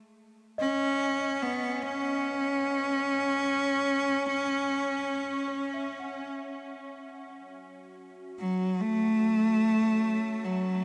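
Reflective and melancholic, this ambient passage in F# dorian drifts in free time and is cut from a longer piece. From 0.6 s a single bowed cello carries the melody up front and close, its tone biting and nasal with vibrato, an airy bow and an intense edge, set in a diffuse ambient delay. Behind it, a small celesta plays delicate, bell-like arpeggios with a sweet sound from medium felt hammers, fading out until it stops at 7.2 s. At 7.8 s a sawtooth and sine drone enters in the background, wave-folded and resonant, with moving overtones, a slow attack, a long release, chorus and its own reverb. The harmony moves from a rootless Badd9 to F# minor, and a huge wet reverb with a 7.5-second tail surrounds the whole piece.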